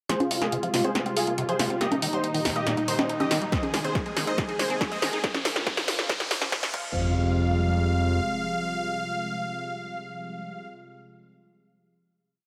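Driving and euphoric, this short uplifting trance piece is a build that runs to about 7.0 seconds before landing on a final hit. Huge, detuned supersaw chords carry an up-front riff in sixteenths over a pedal note, moving in thirds and sixths under a filter sweep and sidechain pumping. A bright analog pluck doubles them in unison, and a thick, warbling unison pad holds sustained chords beneath. A squelchy liquid acid bass cycles a 32-step sequence, and a gritty, saturated synth bass plays off-beat notes in the background. A punchy, tape-flavoured analog drum machine drives a fill of congas, hi-hat, snare and crash. From 3.5 seconds a layered electronic kick adds four-on-the-floor pulse while a riser and impact lead into the final hit, all set in a lush hall reverb.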